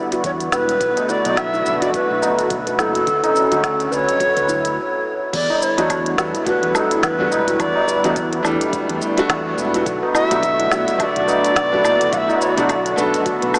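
Organic downtempo at 106 BPM in E dorian with an earthy, swung 16th-note feel, where a breathy, reedy ney carries the melody up front over ringing handpan arpeggios with delay, a soft detuned sawtooth pad and a round, dark fretless bass that both pump with the sidechain, a woody-snared electronic kit with crisp hats and a deep background kick, and distant high-tuned tabla, all pausing briefly at 4.8 s before a felt-muted upright piano enters at 5.8 s, the whole dreamy mix soaked in huge ambient reverb with a small-speaker sound.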